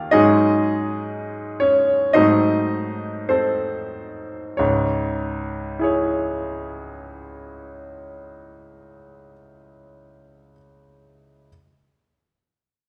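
A bright grand piano opens this brief classical excerpt, sitting up front in a wet recital hall reverb that lends its short-sustained notes a resonant halo. The mood is melancholic and yearning, set in C# minor and 4/4 at a slow, rubato pace that drifts between 44 and 62 BPM. Over the first 4.6 seconds the music slows, lingering on a G#7sus4 that darkens into G#7b9, building tension around the dominant. At 4.6 seconds a new section begins as the harmony resolves onto C#m, bringing a sense of sorrowful arrival. The piano spans from C#2 up to G5, its brilliant, natural tone ringing through the hall until the fragment ends at 11.5 seconds.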